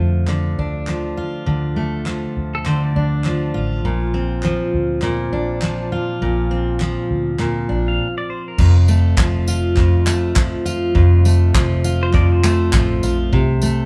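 A full-bodied fingerpicked steel-string acoustic guitar, sitting up front, opens this sunny acoustic pop excerpt alongside a dark, round, foam-muted vintage electric bass. The tempo is an easy-going 101 BPM in 4/4, with a light sixteenth-note swing in F major. Crisp, close group handclaps join almost at once, and at 2.5 seconds a bright, twangy pedal steel guitar slides in as a second line, its clean, compressed tone shaped by volume swells. The harmony moves from Dm to Bbadd9, then a brief stop clears the way before the music lands on F at 8.6 seconds. There an unplugged drum kit enters with bundle sticks, a punchy kick, tambourine, handclaps and crash cymbal, all with a small-room character. The pedal steel, having returned just before the stop, carries on through this fuller passage as the chords reach C5 near the close, with the band playing live together in one room under a moderate large studio reverb.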